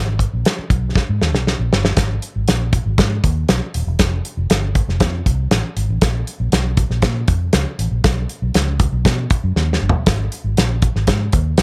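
Urgent and driving, this uptempo 1960s-style soul excerpt sets a dark, round, foam-muted fingered electric bass beneath an up-front acoustic drum kit with a tight kick, medium-tuned snare, toms and hi-hat, and a rolled-off top in a small, dry room, the drums entering at 0.2 seconds and breaking into fills at 1.0 and 9.6 seconds.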